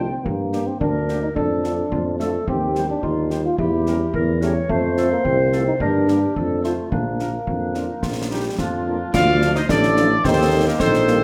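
This festive, spirited military-style march for wind band in 2/4 opens with most of the band at once: a trumpet section carrying the melody with a light vibrato and a distant, roomy sound, over a clear solo euphonium and a mellow, smooth-topped woodwind section on second lines. Beneath them, a loose, very quiet French horn section fills in the accompaniment, while a solo tuba sits up front on the bass with a warm tone, soft attack and gentle vibrato. At 0.3 seconds the concert bass drum, snare drum and clash cymbals join, close and dry, with dark cymbals. The harmony moves through minor and diminished colours before settling onto Bb, then shifts toward Dm and Eb in a new section. At 9.7 seconds a tight, dark trombone section enters in the background with sustained chords. The whole band sits in a large studio reverb, and this short passage is cut from a longer piece.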